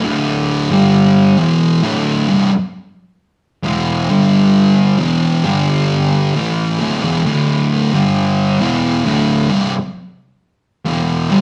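A thick, fuzz-drenched electric guitar plays alone for the full 11.4 seconds of this excerpt, its picked, double-tracked tone sitting up front and ranging from low to middle register. It's slow, heavy and sludgy metal, moving through D5, G5 and E5 chords before returning to D5 at 6.4 seconds. A wet studio reverb and a live-in-the-room feel give the guitar's distorted, warm grind a roomy weight.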